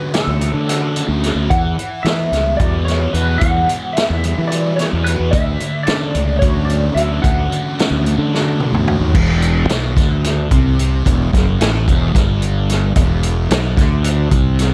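A round, punchy fingered fuzz bass sits up front in this dark, mysterious psychedelic rock excerpt in 7/8, under a thick, double-tracked fuzz guitar riff with distortion and phaser, a slightly broken-up, compressed lead guitar melody through wah and analog delay that stops at 8.6 s, and a vintage acoustic drum kit with dark cymbals and a punchy kick whose fill from 8.3 s leads into a passage on Em at 9.1 s, all heard in a dry studio room.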